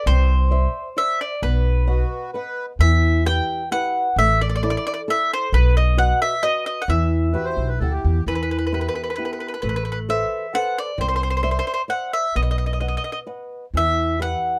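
Italian folk serenade in E minor at 132 BPM in 3/4, wistful and passionate, with a woody, double-strung picked mandolin carrying the melody up front over fingerpicked flamenco guitar and a dark, thumpy pizzicato upright bass on gut strings, while a reedy, slowly beating accordion adds brief second-line phrases at 1.9 and 7.3 seconds, captured in a dry, rough home-demo mix cut from a longer piece.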